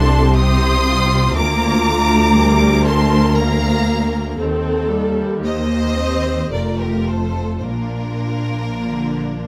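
A focused, lush section of first violins carries the lyrical melody from Bb4 up to Eb6, its bowed vibrato singing over the ensemble in this slow, romantic classical movement for string orchestra. Beneath it, a second violin section sounds more distant and expressive, tracing its own line between F4 and C6, while the violas supply a smooth, even accompaniment from close by. The cellos add a warm, expressive bass with portamento, and the double basses give the low end a clear, intense foundation with a smooth top. Set in Bb major and 3/4 at around 51-60 BPM, the tempo breathes freely with rubato as the harmony moves from F7/C through Bb/D and Cm/Eb to F before settling on Bb at 7.7 seconds. The close, detailed microphones and dry studio sound keep every bowed section intimate and present across this 9.5-second passage cut from a longer piece.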